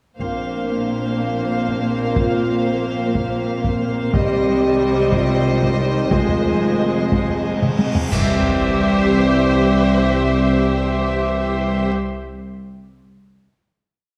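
Hard-struck taiko drums pound a big, dry ostinato through this epic orchestral film cue in 6/8, playing until 8.3 s as the ensemble arrives on a final C chord. Lush tremolo violins carry the melody and a second line over bowed violas, while dark French horns, very quiet clear trombones and a bright chamber organ with chiffing flute stops hold sustained chords above rich cellos and double basses. Cymbal swells, clash cymbals and concert bass drum strokes enter in the background at 4.1 s, and a huge swell rising from 7.4 s into a sub drop impact at 8.1 s marks the closing chord, all set in a moderate scoring-stage reverb.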